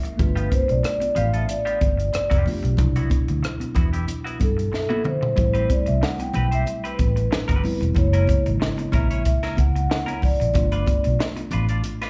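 Bittersweet and cinematic, this short cut from a longer piece of lush 1970s-style soul moves at 93 BPM with a gentle sixteenth-note swing, its vibraphone taking a mellow, ringing solo with soft mallets and slow motor vibrato over chords that drift from G7 through Cmaj9#11, Am9 and F#7. A worn, slightly out-of-tune tine electric piano and a bright, picked semi-hollow guitar riff both carry slapback echo, while a dark, foam-muted fingered bass sits round beneath a dry, punchy cocktail kit that plays a fill from 4.7 to 5.4 seconds. Thick-skinned congas sit in the background, a delicate, bell-like celesta shimmers until 5.7 seconds, and the whole band sounds as if heard through a club PA in a small room.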